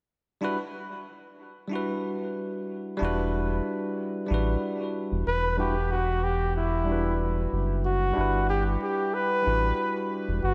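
Lightly swung sixteenths in 4/4 carry this smooth sunset chillout piece, where a bell-like tine electric piano with low-pass filtering and diffuse delay opens at 0.4 s, a round, dark analog bass with ring modulation joins at 3.0 s, and a close-miked flugelhorn with vibrato and delay takes a jazz-style solo from 5.3 s, set in a dreamy, reverb-soaked hall.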